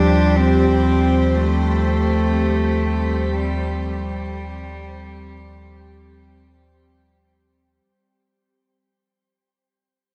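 Ambient and weightless, this short passage drifts in free time over a single lingering chord, with a rich, pure bowed cello singing a floating sul tasto melody up front until 6.8 seconds. Around it, an evolving wavetable pad morphs through chorus, phaser and its own reverb, while a barky, lightly overdriven tine electric piano spins delayed arpeggios through a combo amp. A round, deep sine sub bass holds the bottom, and the whole dark, warm mix sits in a long shimmer reverb as it fades out.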